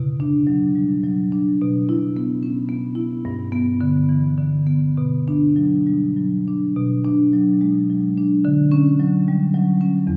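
A long, wet church reverb surrounds this recording, letting each note hang in a spacious hall-like ambience. It is a short excerpt from a contemporary classical piece for solo marimba, reflective and hypnotic in mood. The marimba, played with medium mallets, sits up front with a warm tone, moving through its low and middle register across the full 10.2 seconds. The music flows in 6/8 with a flexible, rubato feel. The harmony drifts from minor chords through suspended and major colours, and the opening section returns at 6.7 seconds before settling on a major seventh chord.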